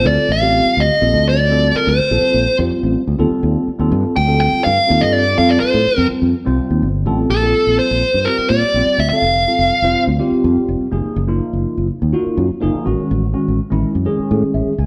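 Soaring and bright, this electric jazz fusion excerpt sets a dark, smooth overdriven lead guitar melody up front until 10.0 seconds over a clean tine electric piano through a phaser and a warm, direct fretless electric bass, all sharing a stone room's reverb as a band playing live, while lush major chords such as Bbmaj9 and Gbmaj9 drift toward a closing electric piano fill at 14.3 seconds.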